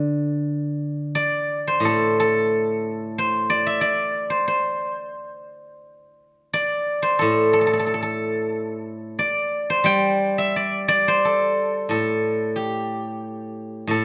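Heard in a wet stone room with a 1.4-second reverb tail, this 14-second excerpt of flowing, pastoral traditional Chinese plucked-string music features a solo steel-string zither, played with fingerpicks and placed up front, its bright, silvery, ringing tone moving freely in rubato 2/4 at roughly 84-94 BPM in the D shang mode across a range from A2 to G5, before a new section begins at 11.2 seconds.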